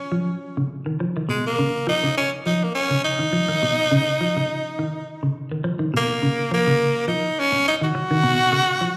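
Heard through a club's PA at a live gig, this short cut from a longer afrobeat piece sits in a lush hall reverb that lends the room a lingering, spacious tail. The groove moves at 104 BPM in 4/4 with a light sixteenth-note swing, and the mood is hypnotic and driving, anchored on an Ebsus2 chord in E-flat minor. Up front, a close-miked tenor saxophone carries the solo melody in a pop style, its gritty, raspy tone full of vibrato and scooped notes, with a slapback echo trailing each phrase. Alongside it, a semi-hollow electric guitar plays clean, fingered arpeggios in a dark, hollow-bodied register, colored by a phaser. Both parts play through the whole clip, and the music moves into a new section at 5.6 seconds before it is cut at 9.0 seconds.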